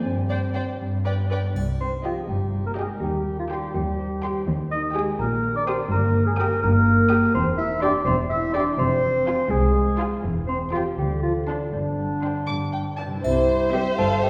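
Heard from further back in a reverberant scoring stage, this short cut from a longer film cue has a magical, quirky air, moving at 82 BPM in 6/8. Mellow French horns hold sustained chords while a ringing harp plays arpeggios and a smooth chamber cello section carries the bass from the opening. Just after, a dark, woody symphonic violin section takes the melody, joined by an expressive chamber violin second line and a lush viola accompaniment in the background. At 1.6 seconds a focused double bass section and a triangle enter, and soon a bell-like celesta also carries the melody while an up-front classical clarinet adds a second line. The harmony begins in C minor and brightens to C major at 7.3 s, and a hollow, airy flute slips in at 13.2 s as the cue arrives on a C major chord.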